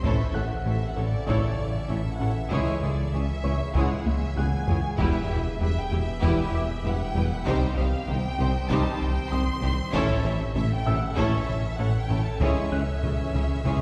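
This cinematic hybrid orchestral and electronic film score excerpt moves at 97 BPM in a futuristic, relentless mood, cycling through A, C#m, Em and Cm. Lush, vibrato-rich violin sections carry a soft-attacked, expressive melody and a smooth second line over violas, while quiet trombones, French horns and a pure, organ-like pad with ensemble chorus hold sustained chords, a dark pluck arpeggiates and a grand piano adds texture in the background. Underneath, a round, evolving analog bass riff leads a low end of mellow tuba, cellos, double basses and saturated sub bass, with hard-stick taiko drums playing a fill at 4.1 seconds, all heard from further back in a reverberant scoring stage with lossy compression artefacts.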